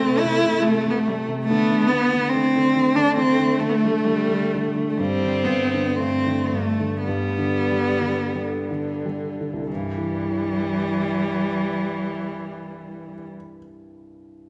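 Pastoral and nostalgic, this fragment of a Celtic slow air in C major moves in a rubato 4/4 between 43 and 72 BPM, slowing from 1.5 to 9.7 seconds before settling on a C chord. A single bowed cello carries the melody up front with a rich tone, vibrato, soft attacks and expressive portamento, while one viola adds a warm, boxy second line with its own vibrato and slides. A felt-muted upright piano, also up front, gives a dark, mellow, intimate accompaniment with audible action noise and a vintage character, and it lingers alone from 13.3 to 14.5 seconds in the moderate reverb of a church or concert hall.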